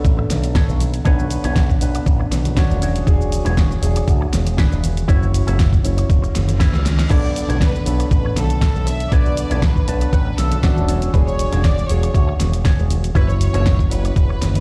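A sleek, groovy nu-disco groove at 119 BPM in B dorian opens with a gritty, thumpy electronic kick up front, a round, filtered picked bass, a warm grand piano with sidechain pumping and tape echo, and a bright, twangy envelope-filtered electric guitar riff with chorus, joined within the first moments by a layered electronic pop kit with a fat snare, hi-hat, shaker and crash, and then by very quiet, distant congas. A background reverse cymbal at 6.3 seconds and a drum fill lead into a clear, earthy violin section with light vibrato that carries the melody from 7.1 seconds, and a clean guitar fill arrives at 9.6 seconds. The chords cycle through Bm9, E13 and F#7sus4 with a lightly swung sixteenth-note feel, set in a large studio reverb.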